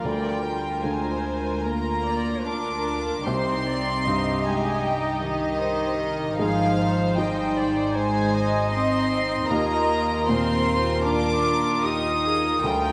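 Bathed in a lush concert-hall reverb, this tender, moving excerpt of a cinematic orchestral film score drifts in rubato as a floating, sul tasto violin section carries the melody up front over a second violin line, vibrato-touched chamber violas, a distant, pure cello section and a dark double bass section, while a felt-muted upright piano adds mellow, intimate accompaniment beneath chords moving from Bb/D to Cm, Ab and Ebsus2.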